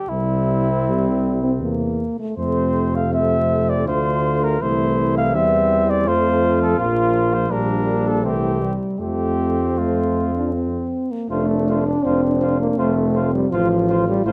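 A mellow cornet opens this noble, stately classical fragment for brass quintet in triple time, carrying the melody up front with vibrato and a soft attack. At 0.1 seconds a vintage-toned trumpet joins on a second line, alongside a warm, close-miked French horn and a clear trombone with a smooth top, set in the background. An up-front tuba with its own vibrato anchors the bass, the whole quintet moving with a loose rubato in a moderate recital hall reverb, captured by close, detailed microphones and flecked with vinyl crackle until it breaks off at 14.3 seconds.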